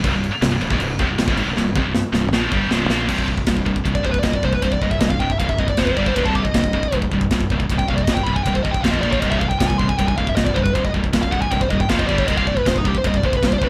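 Recorded live in one room with light reverb, this dark, relentless heavy metal excerpt in C minor charges along at 157 BPM, as a bright, scooped, double-tracked high-gain guitar riff and a growly fuzz bass drive over a tight, gritty drum kit whose fill at 1.6 seconds sets up a nasal, overdriven lead guitar with a parked wah that enters at 3.9 seconds for a solo over chords moving through C, F, G and Bb.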